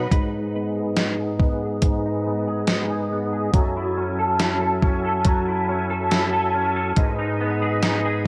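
A tonewheel organ and a semi-hollow electric guitar open this hazy, ethereal dream pop fragment at a slow 70 BPM in a straight 4/4. The organ holds full, lightly overdriven chords colored by chorus vibrato and a slow rotary speaker, while the guitar picks clean, compressed arpeggios through ensemble chorus and delay. From 0.1 seconds a gated 80s digital drum machine joins with hi-hat, a thumpy kick and a gated reverb snare, its sampler-style kit overdriven and re-recorded in a small room, sitting a little louder than the other parts. The harmony moves from G#m to F#m7 at 3.5 seconds and back to G#m at 7.0 seconds, as a filter sweep runs through the whole passage. A moderate plate reverb and a worn cassette tape sound with warbly pitch drift wrap the mix in a dreamy blur.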